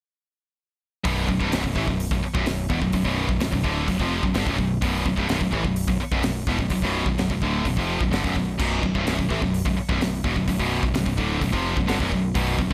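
Two distorted high-gain guitars open this heavy, aggressive metal excerpt at 1.0 seconds, one up front and picked over a Bm riff, the other scooped and set in the background. A growly, direct electric bass and a polished, airy studio drum kit with a punchy kick, high-tuned snare, hi-hat and crash join almost at once and drive the straight 4/4 groove to the cut at 12.7 seconds. The whole passage carries light reverb, with the small-room drums placed up front beside the bright foreground guitar.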